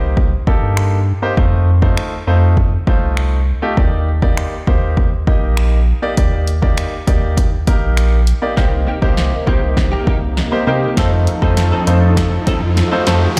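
Upbeat and summery, this dance-pop fragment at 100 BPM pairs a clear, polished baby grand piano and a deep, round sub bass, both pumping under sidechain, with a punchy analog drum machine of kick, snare, hi-hat and finger snaps over Cm7, F7 and Ebmaj7 chords, until at 8.6 seconds a build-up arrives with a drum fill, a filter sweep, an evolving detuned supersaw swell with phaser and pumping, and a picked, clean direct electric guitar riff with ensemble chorus tucked in the background, joined at 10.2 seconds by a very quiet riser, all heard as if played on a big sound system in a bare room with large studio reverb.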